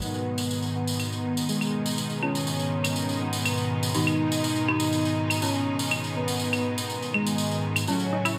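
Dramatic and driving, this melodic techno excerpt at 122 BPM in G# minor sets a smooth, detuned supersaw melody with a filter sweep and tape echo over clear bowed symphonic string chords, fat nasal analog synth brass stabs with chorus and delay, jingly acoustic tambourine and electronic claves from 0.4 seconds, while an eerie inharmonic FM bell adds a very quiet second line from 2.2 seconds and a tight sequenced synth arpeggio flickers in at 8.1 seconds as the chords move from G#m to F#m in light digital ambience.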